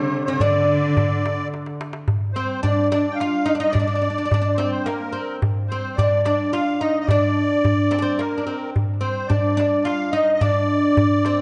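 A woody, fretless oud carries the melody up front in this passionate, festive Arabic maqam ensemble piece in D maqam kurd at 108 BPM in 3/4, joined by a reedy, shimmering musette accordion on a second line and a crisp metal-shell darbuka played with hard hands, while a lush bowed cello section in the background drops out at 1.5 seconds and a distant duduk drone with scooped notes holds until 2.1 seconds, as a drum fill leads into the longer second section, all within a dark production with recital hall reverb.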